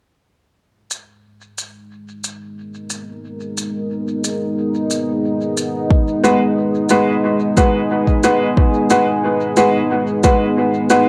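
Ambient dub with a hazy, meditative mood, where a distant, roomy shaker sets in at 0.9 seconds, a deep, dark detuned pad with chorus and vintage sampler grit holds sustained chords from 2.5 seconds, and a tape-warm electronic kick arrives at 5.9 seconds just before clear, woody upright piano stabs trail off into dub echo, all bathed in a moderate spring reverb over a single minor-seventh chord.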